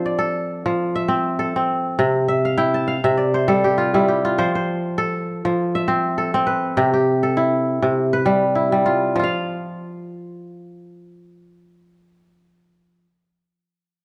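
A lightly swung 16th-note pulse at 100 BPM in 4/4 carries this flowing West African traditional piece in F Lydian, cut from a longer work, where a solo fingerpicked kora, ringing, crisp and up front, moves between F and C chords, adds a fill from 2.3 to 4.4 seconds and lets the harmony fall away at 9.2 seconds, set in a moderate recital-hall reverb with a dark, warm production.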